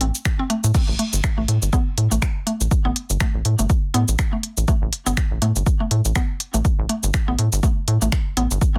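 A dense, heavily limited, nearly reverb-free mix opens this quirky, cool minimal techno excerpt in A minor at 122 BPM with a 16th-note swing, where a woody, nasal FM mallet-like pluck riff with chorus, delay and sidechain pumping rides over a rubbery, hollow square bass that pumps up front, a tape-toned techno kit of smooth hi-hats, cabasa, finger snaps and crash cymbal, and a dry, punchy overdriven electronic kick that enters at 0.3 s before the drop lands at 0.7 s.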